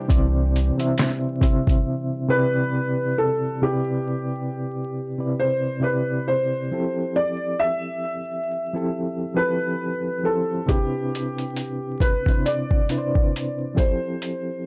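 A lazily swung 16th-note groove in 4/4 carries this cosy, dreamy lo-fi hip hop excerpt. A soft, muted upright piano with audible action noise plays the melody through a low-pass filter and analog delay, over a reedy electric piano with fast tremolo, while a very quiet detuned analog pad holds chords until 3.6 seconds. A deep, round bass note and a faint finger snap appear only briefly near the start, and the pitched-down sampler drum kit, with its thumpy kick, fat snare, hi-hat and handclaps, drops out at 1.9 seconds and returns at 10.7 seconds, all under light reverb, gritty transformer saturation and vinyl crackle.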